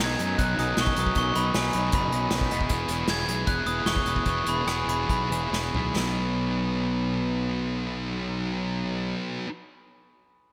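A glockenspiel struck with soft plastic mallets carries the melody in this jangly, upbeat indie rock piece in B major and 4/4. Its ringing, bell-like line leads over a dark, up-front fuzz guitar riff, a growly overdriven fingered bass and a bright, twangy guitar riff from a small old amp, lo-fi and slightly broken-up under chorus and delay. The drum kit sounds acoustic and roomy, with bundle sticks, a punchy kick, a medium-tuned snare, rim clicks, hi-hat and toms, all wrapped in gated reverb. The tempo sits between 132 and 156 BPM, and the music slows from 2.7 seconds as the harmony moves from Badd9 to E. A drum fill at 5.5 seconds leads into a new section at 6.0 seconds, where the distorted guitar and bass carry on together over a B chord. A plate reverb and a glossy 1980s-style digital production give the mix its polished sheen.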